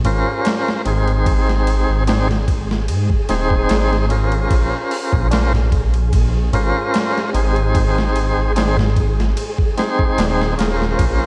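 A dreamy, reverb-soaked mix with a moderate lush hall and a layer of vinyl crackle frames this short, smoky trip hop excerpt, cut from a longer piece and moving at a slow 74 BPM in 4/4 with a light swing on the 16ths. Up front, a dusty soul sampler-style drum kit brings a gritty, overdriven sound, with a thumpy kick, a medium-tuned snare, hi-hat and ride cymbal set in studio ambience. A dark detuned saw bass rumbles deep beneath it, its beating, saturated tone running from Eb1 to Ab2 through tube saturation. A full, lightly overdriven tonewheel organ with key click, vibrato, tremolo and tape echo carries the accompaniment between C4 and C5, cycling through Bbmadd9 and Ab. A very quiet, low-tuned, ringing tabla sits far beneath the kit until 10.4 seconds, while a flickering, granular texture on Ab4 hovers in the background under lush chorus, adding a cinematic haze.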